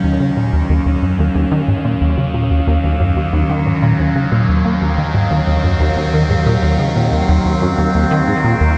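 A plucky analog bass riff drives this ambient, sequencer-driven space music at 91 BPM in a straight 4/4, giving an expansive, hypnotic excerpt in Eb dorian that rests on a single Ebm7 chord throughout its 8.8 seconds. The bass sits up front with a punchy, funky character, its fast attack and filter pluck decaying into a mellow tone, thickened by ensemble chorus and analog delay. Alongside it, an evolving wavetable pad holds sustained chords from Eb2 to Db4, its bright, morphing sound shaped by a slow attack, long release, phaser and built-in reverb. Deep in the background, a dark, breathy, wind-like tuned noise texture hovers on F5 and fades in across the full 8.8 seconds. A huge, wet ambient reverb with an 8.3-second decay surrounds the whole mix, lending it a vast sense of space.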